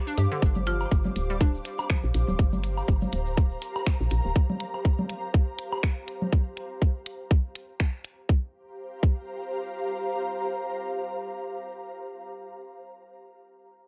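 Minimal techno with a sparse, quirky mood, cut from a longer piece and built on a swung sixteenth-note groove in a steady four. An overdriven electronic kick sits up front until about 9.2 seconds, layered with a garage kit of finger snaps and hi-hat that carries the same grit. A woody, round FM bass with a fast, decaying attack pumps against the kick in the low end, while a hollow, bouncy square-wave pluck with a warbling, detuned vintage character plays a short riff through chorus and delay in the opening two seconds. Congas and woodblock with a tape-warm, roomy tone add percussion, a grainy tube shaker ticks in the background, and a bright marimba struck with hard mallets drops a single echoed note near 0.7 seconds. An ethereal pad of detuned sawtooth, triangle and sine layers breathes with tremolo, ensemble chorus and sidechain pumping across the whole passage, lingering alone into the closing section after the drums fall away. 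The mix is dark-topped with light digital ambience.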